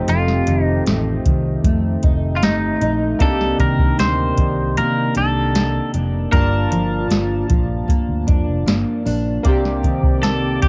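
A soft vintage rhythm box sets a slow, straight pulse in 4/4, its deep kick, crisp snare and metallic hats sitting up front in this mellow, lonely slice of bedroom-flavoured indie pop. A foam-muted fingered electric bass adds a dark, round, punchy low end, while a fingerpicked steel-string acoustic guitar with woody, full-bodied old strings is bathed in lush chorus and vibrato. Chorused retro synth keys, glossy with pulse-wave and sawtooth tones and a filter sweep, sit low in the mix with a cassette-tape colour. A clean, scooped semi-hollow electric guitar carries the melody, lightly chorused and trailed by tape echo. The chords move through F7, Cm9 and Gm7 before returning to Cm9 at 9.5 seconds, and a faint, swirling phased analog pad with detuned sawtooth tone enters at 9.9 seconds. The dry, close sound of a home cassette recording gives the short excerpt an intimate, lo-fi character.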